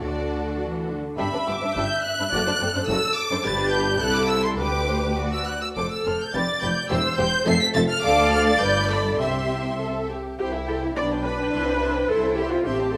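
A cheerful, lively classical-period string orchestra movement at 105 BPM in 2/4, in G major shifting to C major at 5.8 s, with a rich, up-front first violin section singing the melody over focused second violins, smooth, even violas in accompaniment, and expressive cellos with distant double basses anchoring the bass, all bowed with vibrato in a wet recital-hall reverb.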